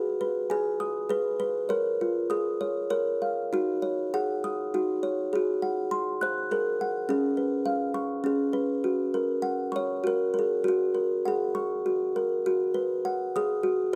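A solo kalimba, thumb-plucked with a woody, ringing tone, carries this sleepy, innocent children's lullaby in F# major from 0.0 to 14.0 seconds, sitting up front through close, detailed microphones and light reverb. The gentle 3/4 sway moves at 100 BPM with a loose, rubato feel, drifting from G#m through D#m7 and G#7 to settle on F# at 8.8 seconds. The opening phrase begins again at 10.7 seconds before this fragment of a longer piece breaks off.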